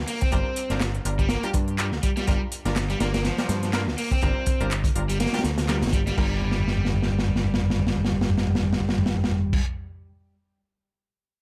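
Funky and raw, this swung breakbeat cut at 123 BPM in G minor rests on a Gm7 chord, driven by a punchy, gritty acoustic breakbeat kit up front, a picked electric bass, an overdriven semi-hollow guitar riff with tube saturation and tape echo, and bright orchestra-hit-style synth stabs with reverb and tape echo, while a layered house kit adds crisp hats and handclaps until 6.2 s, when the groove shifts into a new section that carries a drum fill from 6.4 s, all in a dry mix.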